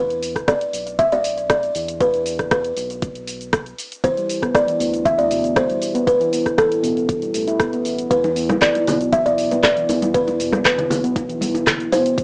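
A home-recorded cassette sound with a small-speaker tone and a snug room sets up this driving, hypnotic afro house cut in E minor at 118 BPM, where an up-front buzzing, woody kalimba carries the melody through tape and analog delay over a round, dark analog bass pumping from the sidechain, a produced afro-pop kit of handclaps, hi-hat, rim click and shaker, and a deep electronic kick, before a ringing, meditative handpan adds pumping, delayed arpeggios from 4.0 s and thin-skinned, damped congas join at 8.2 s.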